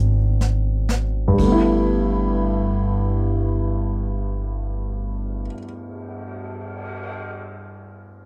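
This jazz ballad excerpt moves at a slow 40 BPM in 4/4 with a swung eighth-note feel in G major, its mood romantic and tender. A dark baby grand piano carries the accompaniment throughout, mellow and intimate, with audible action noise adding a vintage, up-front presence. An upright bass plays pizzicato in its lowest register, woody and growly with a thumpy attack, until 5.5 seconds. The jazz brush drum kit enters at 0.4 seconds, set back beneath the others, with dark cymbals including a swell, a medium-tuned snare, a boomy kick and ride. The opening brings a drum fill and a slowing of pace over a D13 chord, settling onto G6 at 1.4 seconds. The sound is dry and close, in the manner of a 1970s studio recording with little reverb.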